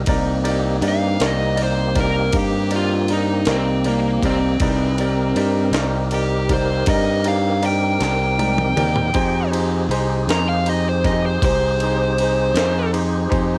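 Slow blues in C minor at 53 BPM in 12/8, mournful and smoky: a dark, overdriven, picked lead guitar enters at 0.9 seconds to solo over a growly, up-front fingered electric bass, a clear, intimate concert grand piano with audible action noise, a fat tonewheel organ holding background chords through a slow rotary speaker with key click, and a gritty, pitched-up sampler-style drum kit with a thumpy kick that plays a fill at 8.0 seconds before the harmony moves from Cm7 to Fm7 at 9.1 seconds, all in a lightly reverberant home cassette recording cut from a longer piece.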